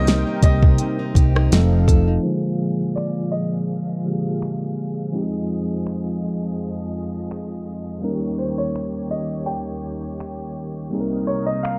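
A dark, low-passed production with digital ambience frames this sensual, late-night slice of contemporary R&B, cut from a longer piece and moving at 83 BPM in F minor with a light 16th-note swing. An up-front smooth R&B drum kit, electronic and tape-tinged with a soft kick, fat snare, smooth hats, rim click and finger snaps, drives the groove from 0.1 seconds. A tine electric piano, clean and heard through its built-in speakers, carries the accompaniment while a detuned sawtooth analog pad with chorus and tremolo holds soft-attack chords underneath, and a clear grand piano with short sustain and delay sings the melody in a high register. A fingerpicked plugged-in steel-string acoustic guitar adds delayed arpeggios, and a punchy, foam-muted fingered electric bass, round and amped, anchors the low end until it drops out at 2.2 seconds, just as a filter sweep begins and the chords move from Cm7 and F7 through Bb7, Fm7 and Eb7 back to Cm7. 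The guitar falls away at 2.8 seconds, leaving keys, pad and drums to carry the mood through to 11.8 seconds.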